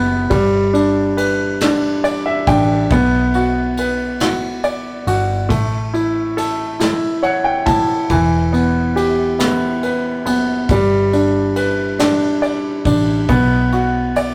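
Melancholic and aching, this six-eight pop ballad excerpt is anchored by a clear, up-front baby grand piano carrying the accompaniment through a G, B minor, A and E minor progression, with piano fills at 1.6 s and 6.8 s. A dark, foam-muted vintage electric bass holds down the low end with a round, punchy tone, and a soft brush drum kit with dark cymbals, a medium-tuned snare and a punchy kick joins at 0.3 s. The rough rehearsal-room recording has tube saturation and a moderate small-room reverb.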